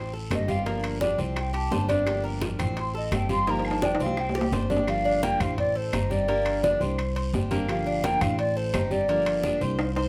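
Danceable and sultry, this Cuban son and guajira excerpt moves in a straight 4/4 feel, led by an airy, hollow jazz flute with vibrato and a crisp chiff that carries the melody over a repeating cycle of minor seventh and suspended chords. A bright, metallic Cuban tres plays double-string arpeggios while a picked steel-string acoustic guitar, with audible finger squeak, adds accompaniment, and an up-front, woody pizzicato upright bass anchors the low end. Ringing, close timbales, a raspy guiro, vintage-sounding claves and thin-skinned congas drive the percussion, with very quiet, tight bongos dropping out at 4.8 seconds after a drum fill from 3.5 seconds leads into the second section, set in moderate studio reverb.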